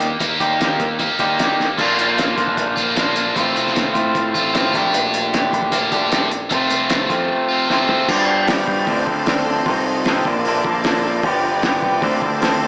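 A straight 4/4 pulse at 152 BPM drives this cool, moody indie rock passage, with a cloth-damped, thuddy kit of fat snare, tight kick and dark cymbals up front, a growling overdriven bass underneath, and two picked guitars: one slightly broken-up and lo-fi through a small old amp with slapback echo, the other bright, high-gain and lightly chorused. At 8.1 seconds the distorted guitar drops out, following a drum fill, and a very quiet brassy analog pad enters with warbling, detuned sustained chords over a turn to G7 and Dm7. A lush hall reverb and small-room ambience give the sound both a big arena scale and a small-speaker character.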